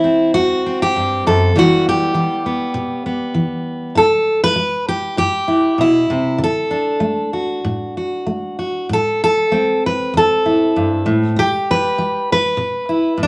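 A bright, full-bodied jumbo steel-string acoustic guitar, fingerpicked up front with audible finger squeak, carries this hopeful solo folk fragment at a loose, rubato 98 BPM in 4/4, moving through Am, Em, C and D before settling on Em/B at 11.4 seconds, tuned slightly below standard pitch to A4 = 438 Hz, and set in a moderate club reverb for the whole 13.3 seconds cut from a longer piece.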